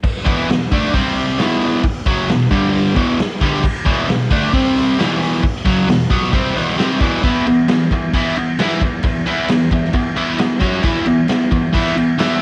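Swaggering and gritty, this short garage rock excerpt, cut from a longer piece, moves in a straight four-four feel with the raw, close sound of a home cassette recording and little reverb. A biting overdriven electric guitar, picked and double-tracked, sits up front with a cassette-tape grain, driving a riff built on power chords and E minor. Beside it, a raw acoustic drum kit plays crash cymbal, hi-hat, punchy kick and a medium-tuned snare, its tone dark and saturated with a rolled-off top and the feel of a bright stone room. Both parts play from the start through to about 12.4 seconds. At 7.2 seconds the music shifts into a new section, with a brief F#5 chord at 10.6 seconds before the riff settles back on E5.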